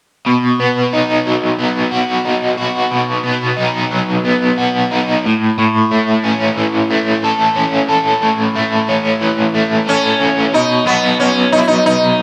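Hypnotic and kaleidoscopic, this short rock excerpt moves at 91 BPM in a straight 4/4 feel. An overdriven electric guitar carries the riff from the start, its bright, double-tracked, compressed tone sitting up front with a tremolo effect. The chords move from B to A, fall away to a brief chordless moment at 10.5 seconds, then return to B as a new section begins at 10.9 seconds. A sitar enters at 9.9 seconds with a melody, its plectrum-plucked strings buzzing and shimmering with sympathetic resonance, fed through an analog delay and placed up front beside the guitar. A wet spring reverb and small room ambience surround the parts, and the passage is cut from a longer piece, ending at 12.2 seconds.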